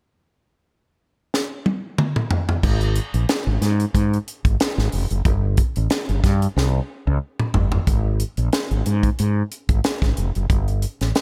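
A direct, up-front fretless electric bass carries this breezy, upbeat slice of polished 1980s jazz-funk pop, entering at 2.6 seconds with a warm tone in its low register. Before it, a tight acoustic funk kit opens with a fill at 1.3 seconds, its high-tuned snare, tight kick, hi-hat, toms and crash sounding natural and close, treated with gated reverb. Another drum fill arrives at 6.6 seconds, and the light swing on the sixteenths keeps the groove buoyant in this short, dry-sounding clip from a longer piece.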